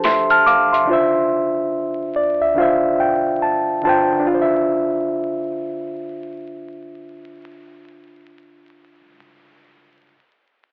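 A reedy electric piano and a boom bap, sampler-style kit of hi-hat and a high-tuned snare open this reflective, nostalgic lo-fi hip hop excerpt in D minor together, the kit lasting only the first 0.9 seconds and sounding compressed, pitched down and gritty with vintage 12-bit sampler character. From there the mellow piano carries on alone, up front and clean as if heard through its built-in speakers, moving from an F6/9 chord to D minor 9 at 0.9 seconds and ranging from D3 to F6. It adds a fill from 1.7 to 4.3 seconds, which is roughly where the passage shifts into a new section. The tempo sits at a relaxed 71 BPM in 4/4 with a 16th-note swing. A low-pass filter and cassette tape coloring soften the piano, while the whole recording carries a home-cassette quality, vinyl crackle, a telephone-like narrowness and light reverb.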